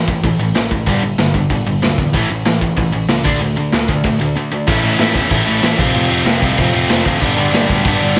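Dry and close, this rowdy, rebellious punk rock clip puts a gritty, saturated garage drum kit up front, its punchy kick and snare driving a straight beat alongside a warm overdriven electric guitar riff, while a bright cranked stack guitar and a growly picked electric bass sit further back. After a brief break at 4.4 seconds, a dark, double-tracked fuzz guitar joins at 4.7 seconds, thickening the riff in the background.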